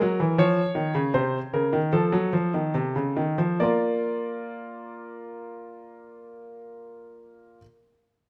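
Solemn and contemplative, this brief excerpt from a longer baroque-style two-part invention is played on solo grand piano in 4/4 with a straight feel, moving at roughly 67-83 BPM. The piano sounds clear, intimate and polished, sitting up front with its action noise audible through close, detailed microphones. Spanning C3 to D5, the playing slows during its opening 3.6 seconds, with a harmony that moves from Bbm at 0.4 seconds to F7 at 1.9 seconds before settling on Bb as the second section begins at 3.6 seconds. A moderate stone-room reverb gives the instrument a resonant halo, and the piano sounds until 7.6 seconds.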